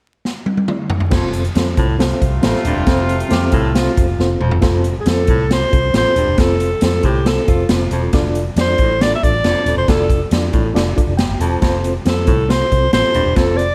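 A light reverb and vinyl crackle frame this danceable, warm slice of uptempo 1960s-style soul in F major at 137 BPM, cut from a longer piece, as a swinging big-band drum kit with dark cymbals and a punchy kick opens with a fill at 0.3 seconds. At 1.1 seconds a round, foam-muted electric bass, a reedy electric piano with fast tremolo and a forceful baritone saxophone riff come in together. A soft-attack horn section adds a second line and a slightly broken-up guitar riff flickers in the background, before a breathy, intimate alto saxophone takes the up-front melody from 5.0 seconds over chords moving from F to Dm and back.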